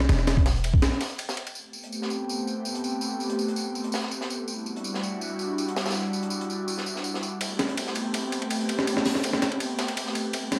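A deep, boomy 808-style bass and a compressed, up-front sampler-style breakbeat kit with a thumpy kick, high-tuned snare, hi-hat and ride open this frenetic, raw drum and bass and jungle excerpt, cut from a longer piece, over an E5 chord. Beneath them a second breakbeat kit of hi-hat, snare and tambourine sits quieter, its saturated, dark, rolled-off tone thinned further by high-pass filtering. The mellow sine bass decays away by 0.8 seconds, and the sampler kit drops out at 1.6 seconds, when an airy, breathy pad of detuned sawtooth and triangle layers with a noise layer fades in slowly, coloured by chorus and phaser and moving between Am9 and Em9 chords. The gritty sampler kit returns at 7.4 seconds to drive the straight groove forward again alongside the softer kit and sustained pad. A lush hall reverb, studio ambience and a constant bed of vinyl crackle give the whole recording a worn, spacious character.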